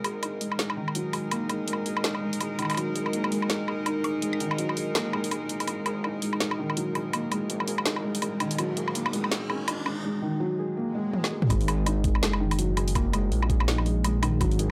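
Half-time drum and bass at 165 BPM with a gentle swing, this spacious, dark section of a longer piece builds on a G#sus2 chord. A felt-muted upright piano sits up front with soft, boxy arpeggios, its audible action noise softened by a low-pass filter and trailed by tape echo. Underneath, a rich chamber cello section holds bowed chords with a reedy gut-string tone, pulsing under sidechain pumping until it stops at 10.0 seconds. A deep, rumbling detuned saw bass stays in the background, while an electronic drum kit sits up front, overdriven, with a woody snare, bright hats, toms and woodblock. An electronic riser enters at 7.3 seconds, followed by a swell and a drum fill, and at 11.5 seconds the drop arrives with a thumpy, pitched-down electronic kick. The mix is dry and gritty, with transformer saturation giving the hardware recording an edge.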